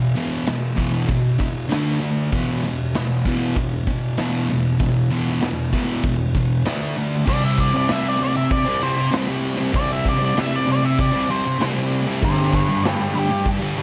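Garage rock with a swaggering, gritty mood, this excerpt from a longer piece moves at 97 BPM in a straight 4/4. A thick, double-tracked fuzz guitar opens at 0.0 s, playing a picked riff up front through distortion, with power chords shifting between E5 and D5 before moving to C5 and finally G. A raw garage drum kit joins at 0.2 s with punchy kick, medium-tuned snare, crash and ride, its saturated sound carrying 12-bit sampler grit, a rolled-off top and a pumping, bright stone-room character. At 7.3 s a dark octave-fuzz lead guitar enters with a picked, distorted melody sitting higher than the riff. The whole recording has the color of cassette tape and a moderate small-room reverb.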